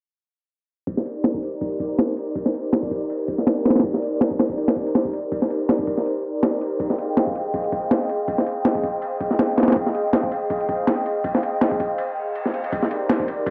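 A gritty, compressed breakbeat kit with a thumpy kick, medium-tuned snare and ride cymbal drives this dark, nostalgic drum and bass excerpt at 162 BPM in C minor, under an airy, breathy, detuned pad with chorus holding Cm9 and Fm9 chords through a filter sweep, while a faint electronic reverse cymbal fills a brief break at 12.1 seconds.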